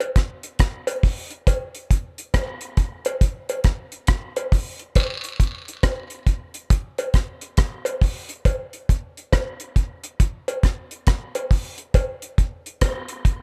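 A dry recording with barely any reverb, this short hypnotic, serious reggae passage is cut from a longer piece and rides a swung sixteenth-note feel. A deep acoustic reggae drum kit sits up front, its tight kick, hi-hat and rim click sounding bone-dry. Behind it, a lower percussion layer of cowbell and jawbone-type rattle, with maracas and group handclaps, carries a small-room character and drops out at 13.1 seconds, just before the drums finish at 13.4.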